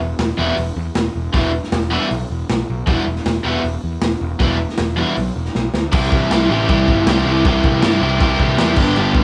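A straight 4/4 at 157 BPM kicks off this gritty, swaggering garage rock excerpt, with a fuzz-laden picked electric bass starting at 0.0 seconds and a raw drum kit of kick, snare, hi-hat and crash joining at 0.2 seconds. The kit sounds saturated and boomy, with a medium-tuned snare, a rolled-off top and a pumping small-room character pushed up front. An overdriven, bright, double-tracked electric guitar enters at 0.4 seconds to carry the riff, its picked attack standing loudest in the mix. The bass, amped and warm with overdrive and tube saturation, holds the low end on an E minor chord. A drum fill at 5.5 seconds moves the music to a new section on C, and the trio plays on until the clip cuts off, all within light reverb and a small room ambience.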